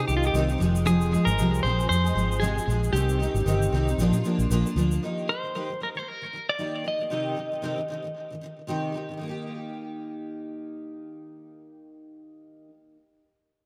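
A double-tracked, bright steel-string acoustic guitar with fresh strings and finger squeak carries this heartfelt, carefree acoustic pop excerpt with a lightly swung feel, joined by a dark, compressed clean electric guitar melody that drops out at 8.7 seconds, a round, foam-muted vintage bass and a grainy egg shaker in the background that both stop at 5.0 seconds, all set in an echo-heavy mix with spring reverb and small room ambience.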